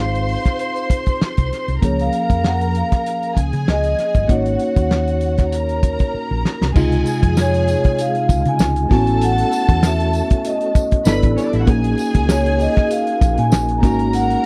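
Dry and close, with little reverb, this excerpt of lush 1970s-style soul moves at an easy 98 BPM in 4/4 with a light sixteenth-note swing, settling into a romantic, smooth mood in Db major. A mellow, ringing vibraphone played with soft mallets carries the melody, shadowed by an intimate bowed string section playing sul tasto with vibrato and a smooth top. Underneath, a worn, slightly out-of-tune tine electric piano supplies extended chords, rootless in the opening passage, while a round, dark hollow-body bass and an up-front acoustic kit with a fat snare, tight kick and dark cymbals hold the groove. A drum fill at 6.1 seconds leads into a second passage at 6.8 seconds, where a lightly overdriven tonewheel organ with a slow rotary speaker and key click enters quietly in the background, joined by a jingly tambourine. The harmony drifts through major ninth and sixth-nine chords before landing on an Ab9sus4.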